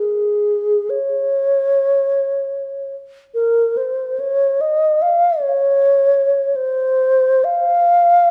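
In free time, this brief excerpt from a longer classical piece unfolds as a meditative, yearning solo for unaccompanied alto flute in F minor, tuned to A4 = 438 Hz. The wooden-headed alto flute sits up front and plays alone for the full 8.3 seconds, ranging from Ab4 to F5 with a pure, mellow tone, crisp attacks, expressive vibrato and rolled-off highs. A moderate recital hall reverb, about 1.5 seconds long, surrounds the instrument.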